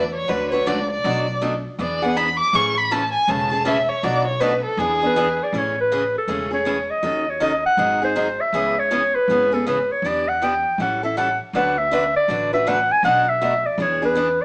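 Charming and swinging, this short cut from a longer acoustic string swing piece in A major moves at 160 BPM, opening with an expressive, close bowed violin solo full of vibrato, portamento and soft attacks, backed by a bright, boxy picked parlour guitar and a woody, growly pizzicato upright bass. At 5.1 seconds a warm, smooth-topped clarinet takes the melody up front, its scooped notes and jazz-style vibrato gliding over changes such as Amaj7, C#m7 and D69. The band sounds as if playing live in one room through a small speaker, wrapped in a wet studio reverb.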